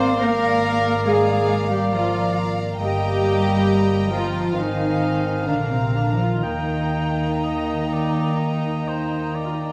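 A distant, floating violin section carries the lyrical melody with a pure, soft-edged sul tasto tone in this serene classical excerpt in Eb major at a rubato 60-70 BPM. An airy flute, a smooth-topped cor anglais and a second violin section with light vibrato play supporting lines, while a mellow bassoon and a rich viola section fill the accompaniment. A very quiet French horn section holds sustained chords, and a dark double bass section and intimate cello section anchor the bass. The music is set in moderate concert hall reverb and captured by close, detailed microphones as the harmony moves from Bb7/Ab to settle on Eb at 6.4 seconds.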